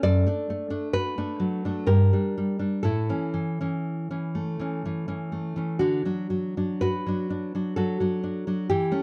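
Romantic solo classical guitar music in D major, this short passage cut from a longer piece moves in 3/4 with a flexible, rubato feel, its tempo drifting between 57 and 70 BPM. The mood is warm and tender. A fingerpicked nylon-string guitar carries everything on its own, sitting up front with a dark, acoustic tone and finger squeaks that bring the player's hands close to the ear. The harmony opens on D/F#, turns to G minor at 1.9 seconds, rests on A, and settles back home on D at 5.8 seconds. Light reverb and a warm, dusky production give the guitar a soft glow.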